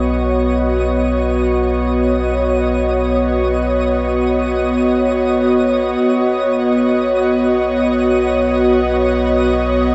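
An airy, breathy pad sits up front, holding a sustained Badd9 chord with a soft chorus sheen and slow-blooming attacks, while a round sine sub bass hums beneath on a low B. In the background, a twinkling granular texture adds sparkling, octave-up glints through its own reverb. This free-time ambient passage in B major, cut from a longer piece, feels weightless and luminous, bathed in a long shimmering reverb and the gentle pitch drift of worn cassette tape.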